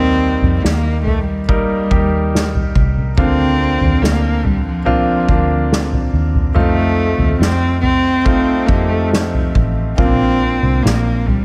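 A small room frames this short cut from a longer pop ballad in Bb major, moving at an unhurried 71 BPM in a straight 4/4 with a heartfelt, hopeful mood. A single bowed cello carries the melody up front, its dark, airy tone played sul tasto with vibrato and a soft attack that keeps the top smooth. Beside it, a clear concert grand piano gives the accompaniment a polished, present voice with deep bass, long sustain and audible action noise that adds intimacy. A vintage fingered electric bass, foam-muted and amped, sits underneath with a round, punchy weight. Soft-mallet drums enter at 0.4 seconds, sounding distant and roomy with a punchy kick, a medium-tuned snare and toms, as the harmony moves from Eb through Bbadd9/D and F7 before settling on Bbadd9 at 10.0 seconds.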